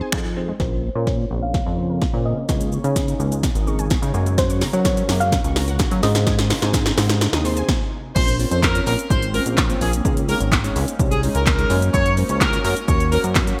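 A punchy, tape-warm analog drum machine with gated reverb drives this confident dance-pop excerpt in Bb minor at 127 BPM, alongside a glossy, nasal chorused synth bass, a bell-like tine electric piano in the background, a lush detuned unison pluck playing arpeggios until 7.6 s, a soft, round pluck melody, a cloudy granular pad holding chords and a barely audible, hollow group handclap, as a filtered build-up with a drum fill and a brief stop gives way at 8.2 s to a drop where a present horn section with light vibrato takes the melody over bright 1980s-style digital production.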